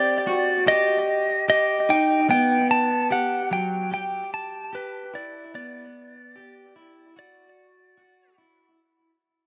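A moderate plate reverb of about 3.2 seconds and an echo-heavy mix give this short dream pop clip a floating, spacious sound, and the whole passage fades out from start to finish. At 74 BPM in a straight 4/4, in G major tuned to A4 = 439 Hz, the mood is blissful and dreamy. A clean, twangy lap steel guitar carries the melody up front, its compressed slide tone trailing analog delay as it moves between B4 and A5 before dropping out at 8.4 seconds. Alongside it, a dark, slightly broken-up electric guitar picks arpeggios up front in a lower register, shimmering with subtle chorus and its own analog delay, and continues to the end at 8.8 seconds. The harmony drifts from a rootless Cmadd9 through G and Em to D, cut from a longer piece.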